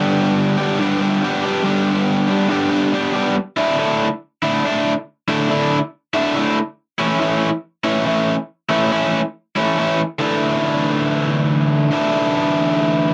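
A raw, overdriven electric garage guitar plays alone and up front, bright, picked and double-tracked, in this carefree, upbeat rock excerpt at 140 BPM in a straight 4/4. The guitar moves through G, Dsus2 and A, leaves the harmony open for a moment at 10.0 seconds, then returns to Dsus2 at 10.2 seconds. Light reverb and a dark production frame its 13.1 seconds.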